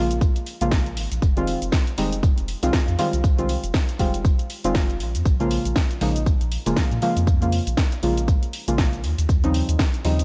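Mellow, nasal chord stabs with chorus, analog delay and sidechain pumping open this moody deep house excerpt alongside a round, sine-like analog bass that pumps in time. A punchy, up-front electronic kick, a house kit with cracking snare, warm hats and cabasa, and a very quiet, gritty sampler-style kit with tambourine enter by 0.2 seconds and ride a 119 BPM groove with a light sixteenth-note swing. The chords move through Bbm7, Fm9 and Eb13 in Bb dorian, with a dry, cassette-tinged sound.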